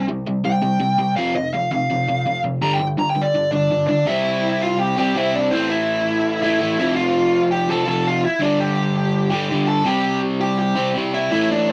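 Punk at 166 BPM in C major, this short cut from a longer piece has a rebellious, upbeat drive in a straight 4/4. Two overdriven electric guitars sit up front throughout: a crunchy, bright, double-tracked rhythm guitar picks out the riff low in the register, while a smooth, dark lead guitar carries the melody higher up. The lead takes a solo over the opening 4.1 seconds as the harmony moves through C5, F5 and G5 power chords. After that the passage shifts to a second section built on C, Am and F, returning to G5 and settling back on C by 9.9 seconds. The sound is a rough rehearsal-room recording with a moderate, short booth ambience that keeps the guitars close and raw.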